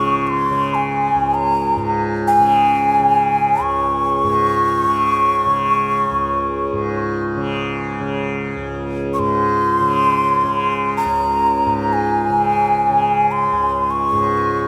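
Meditative world music with a calm, spacious mood, cut from a longer piece and tuned slightly below standard pitch. A breathy, hollow end-blown bamboo shakuhachi carries the melody up front in its high register, its tongued notes bringing chiff, with vibrato coloring its warm tone, while a softly plucked tanpura sustains a low buzzing, shimmering drone beneath it for the full 14.7 seconds. A long, wet church reverb surrounds the recording and opens up the space around both instruments.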